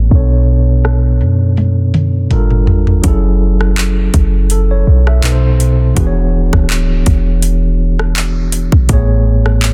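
Longing and sensual, this contemporary R&B excerpt moves at 82 BPM in 4/4 with a light swing on the 16th notes, centered in B dorian. A mellow tine electric piano carries extended chords, from Bm9 and Gm9 through F#m9, B7b9 and E13 to a closing Amaj9. Its clean tone sounds as if heard through built-in speakers. Beneath it, a clean 808-style bass lays down deep, boomy sine notes with a fast attack that decay into a dark low end. The electronic, produced trap drum kit enters at 0.1 s with a hard-clipped kick, metallic hi-hats, handclaps, rim clicks and toms, all with a tape-warm edge. A filter sweep shapes the opening, and a drum fill leads into a new section at 3.0 s. The mix is dry, dense and heavily limited under a low-pass filter, with every part sitting up front.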